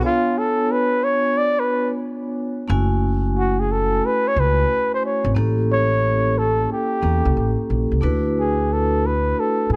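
A swung 16th-note feel at 90 BPM in 4/4 drives this cool, warm jazz-hop piece in A major, where a breathy, whispered flugelhorn solos with mellow vibrato and soft attacks over ringing, metallic vibraphone with slow motor vibrato; after an opening break, a woody pizzicato upright bass enters at 2.7 s as the harmony moves through C#7b9, F#m9, A7b9 and D69 in an intimate small room.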